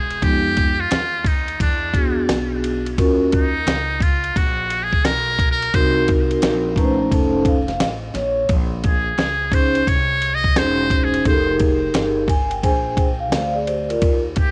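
A buzzy, metal-muted trumpet carries a solo through this cool, smoky jazz-hop cut from a longer piece, its thin vintage tone touched with vibrato and a tape echo. Underneath, a gritty, compressed sampler-style drum kit with a thumpy kick and cassette grit swings at 87 BPM in 4/4, while a woody, growly pizzicato upright bass holds the low end. A mellow vibraphone with soft mallets and slow motor vibrato rings through minor-seventh and extended chords from 0.2 seconds, adding fills at 6.4 and 11.9 seconds, all captured in a home recording on cassette.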